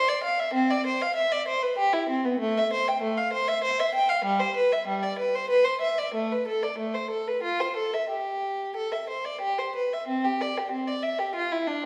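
In 3/4 with a supple rubato, the pulse drifts between 88 and 99 BPM, giving this brief C major fragment of a baroque-style suite movement a radiant, flowing character. A single unaccompanied violin carries everything, played in period style with a reedy, gut-string tone and light vibrato, its line ranging from G3 up to G5. The player sits up front, bowing with a rich voice. A recital hall's reverb, lasting about 1.4 seconds, surrounds the instrument with the resonance of a church or concert space. Around 10.1 seconds the music moves into a new section, and the clip ends at 11.9 seconds, cut from a longer piece.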